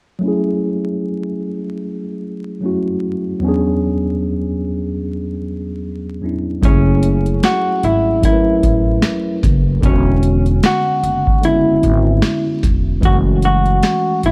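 A worn, slightly out-of-tune tine electric piano opens this melancholic, hazy lo-fi hip hop excerpt alone at 0.2 s, with a filter sweep running over its cassette-tinged F#m7 and E13 chords at 75 BPM in a swung 4/4. At 6.6 s a woody, growly pizzicato upright bass and a booming analog drum machine, with its deep kick, crisp snare and metallic hats, come in. Moments later a dark, compressed hollow-body jazz guitar takes the melody through a low-pass filter and analog delay, all set in a dry, gritty recording dusted with vinyl crackle and digital ambience.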